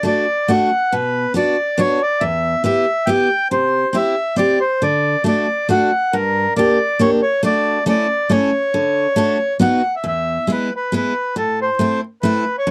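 A dark, softly reverberant production with vinyl crackle sets the scene for this short, festive cut from a longer alpine folk dance-band tune. It moves in a bouncy, straight three-beat feel. Up front, a reedy accordion carries the melody in its upper-middle register, its dry tuning and band-limited, vintage character giving it a full but old-fashioned voice. Beside it, a picked steel-string dreadnought guitar supplies the accompaniment, bright with fresh strings and full-bodied across its range. Both instruments play throughout, and at 10.0 seconds the tune shifts into a new section as the harmony turns toward more colorful chords before the cut ends at 12.7 seconds.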